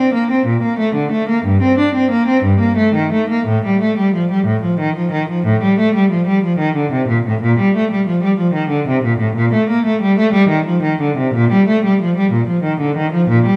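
Solemn and flowing, this baroque-style suite movement for unaccompanied cello unfolds in a rubato 12/8 at about 61 BPM, counted in dotted quarters, in a short passage taken from a longer piece. A single bowed cello plays alone from 0.0 to 13.6 seconds, ranging from G2 to D4 with a clear, smooth, even tone and vibrato, placed up front. A wet recital hall reverb and a dark production surround the instrument.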